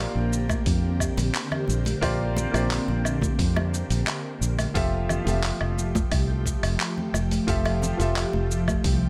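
Bathed in light digital ambience, this smooth, sunny sunset chillout fragment pairs a clear concert grand piano carrying tape echo with an ethereal, airy pad treated with ensemble chorus and phaser over Bb69 and Fmaj9 chords, while a round, dark fingered electric bass sits up front with tube saturation, a gritty, tape-warm sampler-style soul kit of cabasa, handclaps, hi-hat and woodblock enters at 0.3 s, and a thumpy electronic kick and ringing, high-tuned congas played with soft hands in the background join at 0.5 s.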